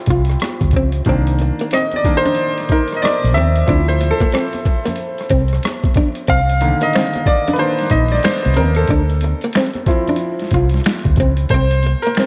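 A swung 16th-note groove at 92 BPM in 4/4 carries this introspective, smooth neo-soul and R&B excerpt, where a bright, worn grand piano takes the lead with a solo across the whole 12.3 seconds over Dm9 and Cm9 chords, joined by a dark, hollow-body archtop guitar, a round, foam-muted fingered electric bass up front, a gritty, overdriven boom bap drum kit with a thumpy kick, high-tuned snare, finger snaps and rim clicks, and very quiet, close congas entering at 0.4 seconds, all set in a dreamy mix soaked in plate reverb.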